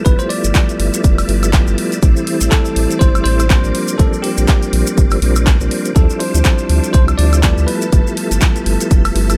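A dry, close-sounding excerpt of moody, late-night deep house, cut from a longer piece, with a swung groove built on an up-front, punchy electronic kick, a dry analog drum machine playing handclaps, hi-hat and woodblock, and grainy, mellow maracas. A round, dark analog bass with tube saturation pumps against the kick, while a smooth tonewheel organ plays stabs through chorus vibrato, a fast rotary speaker, sidechain pumping and digital delay over chords moving from G13 through Am7, Bb69 and Dm11. A bell-like tine electric piano carries the melody with its own delay until 8.1 seconds, as a shimmering, warbling string machine of violins sits in the background.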